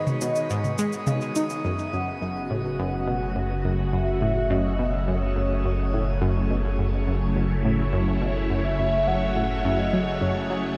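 A straight 4/4 pulse at 105 BPM carries this expansive, hypnotic stretch of ambient, sequencer-driven space music in F# dorian, where a nasal, bright analog pluck riff with chorus, phaser and delay runs alongside sustained chords from a swirling, warbling string machine up front and a mellow, horn-like synth lead with vibrato, while tape-warm electronic toms and shaker open the passage before a deep, round analog bass enters at 1.6 s as G#m7 gives way to F#m, and an airy, wind-like tuned noise texture breathes in very quietly at 5.6 s, the whole set in a wet shimmer reverb.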